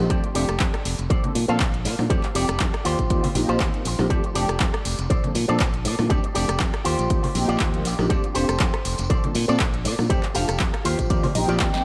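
Funky and feel-good, this short filtered disco house clip swings on a punchy, tape-warm electronic kick and analog drum machine claps, hats, rim clicks and snare, while a growly fingered electric bass, a brassy, detuned synth brass pad with chorus and phaser, a twangy envelope-filtered guitar riff and background tambourine and congas all pump under sidechain and a low-pass filter, with dub echo trailing the guitar and percussion, a clean electric guitar fill arriving at 10.6 seconds and a drum fill at 11.6.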